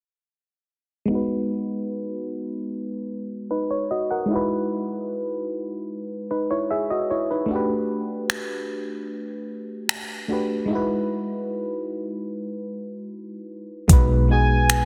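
Light digital reverb and a dense, heavily limited modern master frame this short contemporary R&B fragment, cut from a longer piece, with a smooth, romantic mood at a relaxed 75 BPM in B major. A mellow FM electric piano with a fast, decaying attack and a noise layer opens the accompaniment at 1.1 seconds, its low-pass filter sweeping through chords that move from B6 through F#13sus4, Gmaj9 and Emaj9 before returning to B6. At 8.3 seconds a smooth, produced electronic drum kit joins up front, its soft kick, metallic hi-hats and finger snaps carrying the air of a large room, with soft clipping on the snare. A dark, round, foam-muted fingered electric bass lands on a low B at 13.9 seconds. In the closing instant a smooth gliding lead sounds a high G#, its detuned triangle and sine blend shimmering with chorus, phaser, vibrato and portamento over a soft, sustained attack.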